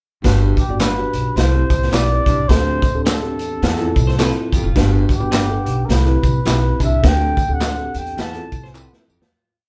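Warm and uplifting, this uptempo 1960s-style soul piece in G major swings along at 106 BPM, with a distant, breathy trumpet singing a motif-based melody over a driving beat from a gritty, saturated garage drum kit that puts the snare on all four beats. A woody, thumpy upright bass plays a melodic, syncopated line with slides, while a reedy, slightly out-of-tune electric piano with harmonic tremolo plays close-voiced rhythmic chords, a whispered baritone saxophone adds low punctuation, and a slightly broken-up guitar through a small old amp chops on the backbeat alongside tambourine and handclaps. A clean electric guitar with spring reverb slips in short fills from 4.1 seconds, and the band, playing live in one lightly reverberant room, fades out from 7.0 seconds under a closing drum fill at 8.7 seconds.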